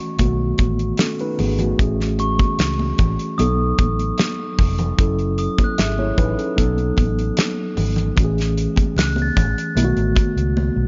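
Lush and warm, this short excerpt of 1970s-style soul moves at 75 BPM in 4/4 over B7, Amaj7 and F#m7 chords, with a mellow, clean tine electric piano up front, a bell-like glockenspiel ringing under soft plastic mallets, a dark, round, foam-muted fingered bass, a dry, polished drum kit with a fat snare and tight kick that plays a fill at 10.6 seconds, and bright, high-tuned congas in the background, all set in a small room.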